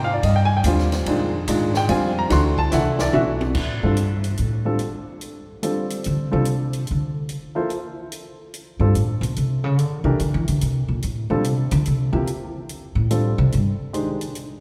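A woody, thumpy upright bass on gut strings plays pizzicato up front and takes a solo from 3.6 s in this intense, hypnotic modal jazz at 145 BPM in swung 3/4, as the key moves from F dorian to G dorian over a present, short-sustained baby grand piano and a compact cocktail drum kit with dark cymbals, a high-tuned snare and a tight kick, the kit playing a fill at 2.7 s, the whole heard in the long, wet reverb of a church.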